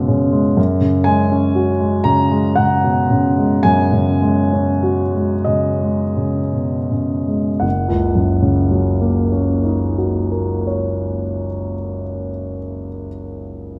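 A clear concert grand piano, up front with deep bass and long sustain, plays alone in a luminous, hazy impressionist classical fragment in a rubato 6/8 that slows through its opening phrase before settling onto an F#6 chord at 7.6 seconds, all bathed in a wet recital hall reverb.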